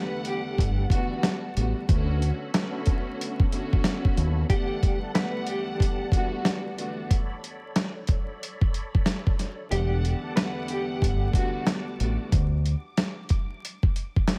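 Boom-bap hip-hop at 92 BPM in E dorian, this dark, reflective excerpt moves with a 16th-note swing over chords that shift between Em11 and Bm9. A gritty, overdriven sampler-style drum kit sits up front from 0.2 seconds, its thumpy kick and medium-tuned snare carrying a small-room grit, and the kick drops out between 9.7 and 11.0 seconds. A deep, round fingered electric bass joins at 0.6 seconds and returns at 9.7 seconds, sitting close and prominent. A mellow, clean electric guitar carries the melody through tremolo and tape echo, while a lush, bowed string section fills out the accompaniment with smooth vibrato. In the background, a reedy tonewheel organ holds sustained chords through a slow rotary speaker, its key click audible, and the whole recording is dry and coated in vinyl crackle.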